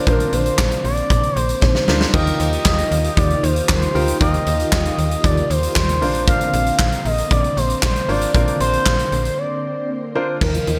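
A straight 4/4 pulse at 116 BPM drives this upbeat, nostalgic synth-pop fragment, where a huge, punchy arena drum kit with gated reverb, a drum fill at 1.6 seconds and a break at 9.4 seconds backs a snappy, metallic slap-like FM bass, a smooth, dark expressive synth lead carrying the melody through chorus, delay and shimmer reverb, a clear concert grand piano with audible action noise, vintage organ-like ensemble strings under phaser in the background, and a squelchy resonant blip pluck arriving at 10.4 seconds, all moving over Bbadd9 and Ebadd9 chords.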